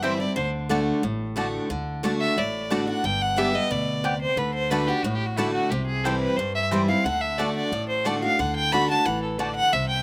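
A clear, bowed fiddle leads up front with smooth, even lines and a light vibrato, carrying the melody through this lively, driving bluegrass excerpt. A bright, freshly strung acoustic guitar picks accompaniment beside it, while a mandolin adds woody double-string stabs until 9.5 seconds and a pizzicato upright bass anchors the low end. The chords move from D to G, back to D, then to C and home to D, and the dry outdoor sound carries little reverb.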